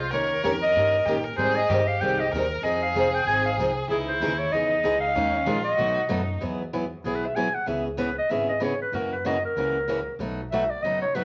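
A growling clarinet leads this lively, charming stretch of acoustic string swing in the jazz manouche style, opening together with a warm, bowed violin and a pizzicato upright bass, with a picked steel-string acoustic guitar joining a moment later. The clarinet sits up front with a raspy, gritty voice and light vibrato, while the single violin, close and warm with vibrato, carries a smooth, even second line beneath it until 6.4 seconds. The guitar, also up front, gives a bright, fresh-stringed accompaniment, and the gut-strung bass adds a woody, dark, thumpy foundation. From 6.4 seconds the clarinet takes a solo over a shifting run of seventh and add-nine chords that carries through to 11.2 seconds, where this passage cut from a longer piece ends. A wet club reverb wraps the small ensemble.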